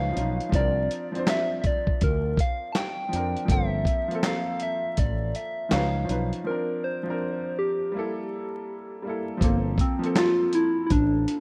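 A rough home-demo mix under vinyl crackle and light reverb frames this melancholic, nostalgic lo-fi hip hop excerpt, which moves in 4/4 with a swung sixteenth-note feel. Up front, a soft struck FM synth lead carries the melody with a round, gentle, keys-like voice, its bright vintage tone warbling through chorus and vibrato with a fast attack that decays. Beneath it, a clear upright piano with a woody, worn, slightly detuned character plays the accompaniment through cassette tape coloring, while a fretless electric bass, direct and amped and treated with analog chorus, holds the low end up front. The dusty soul sampler-style drum kit brings a thumpy kick, medium-tuned snare, hi-hat and handclaps, compressed and gritty with 12-bit sampler grime and the tape-softened air of a small room. The harmony drifts through chords such as C9sus4 and Gm11, with a break from 6.5 to 9.4 seconds before the opening section returns, and a barely audible finger snap slips in at 10.2 seconds.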